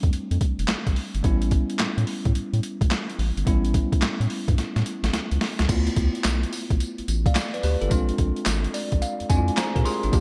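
New jack swing R&B at 108 BPM in D dorian, confident and punchy, swings its sixteenths over chords moving from Fmaj7 and A9 to Dm69 and Bb7. An up-front, gritty sampler-style drum kit with a thumpy kick, high-tuned snare, hi-hat, handclaps, tambourine and crash carries overdrive and gated reverb, and plays a fill at 4.6 seconds. A deep, round, wave-folded analog bass and a bell-like, clean tine electric piano fill out the bright 1980s-style digital mix, with the piano adding its own fill at 8.5 seconds.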